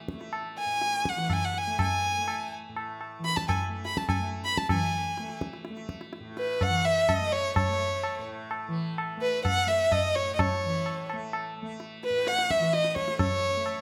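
Hindustani classical music in raga Yaman on A, devotional and radiant, moving in a 3/4 metre at 126 BPM and speeding up across this short excerpt cut from a longer piece. A mellow, buzzing tanpura drone shimmers beneath high-tuned, ringing tabla heard close and dry up front from 0.1 seconds, while a single bowed violin enters at 0.6 seconds to carry the melody with vibrato, soft attacks and expressive portamento. The violin sits close and up front, and a moderate recital hall reverb gives the whole performance a sense of space, with a new section beginning at 4.7 seconds.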